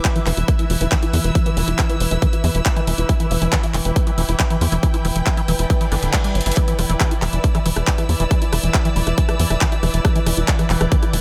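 From the first beat, a punchy, up-front electronic kick drives this alien psychedelic trance passage at 138 BPM in straight 4/4, sitting in E minor on an E5 chord, with an overdriven drum and bass kit of handclaps, rim clicks and bright hi-hats layered around it. A tight sequencer bass joins at 0.3 seconds, a sawtooth and square-wave line with a fast filter pluck and tube saturation, ranging from D1 to E2 and pushing the groove forward. Further back, a squelchy, resonant liquid acid bass riff runs from D3 to E4 under a filter sweep that lasts the whole passage, coloured by chorus and delay and pumping against the kick. Holding everything together is a wave-folded drone on E3, its slow-attack sustained chords full of moving overtones and treated with chorus, phaser, built-in reverb and sidechain pumping, while a clear, focused studio string section adds bowed ensemble texture with vibrato between E4 and E6. 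Near the middle, a reverse cymbal sounds in the background from 5.9 to 6.6 seconds, overlapping a drum fill at 6.4 seconds, in a dry, loud mix cut from a longer piece.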